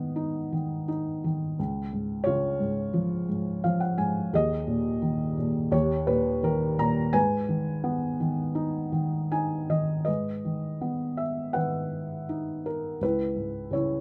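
Moving in a rubato 4/4 that drifts between 77-90 BPM, this brooding, bittersweet fragment of lyrical classical solo piano sits in G# minor and passes through chords like C#, D#sus4 and D# before settling toward C#m7 near 13.0 s. A felt-muted upright piano carries everything from C#2 to A#5, its tone soft, dark and intimate, with thick felt giving a mellow, natural sound placed up front, and short fills around 3.3 s and 8.9 s. Close, detailed microphones catch a faint mains hum beneath a moderate studio reverb, and a new section begins at 10.1 s.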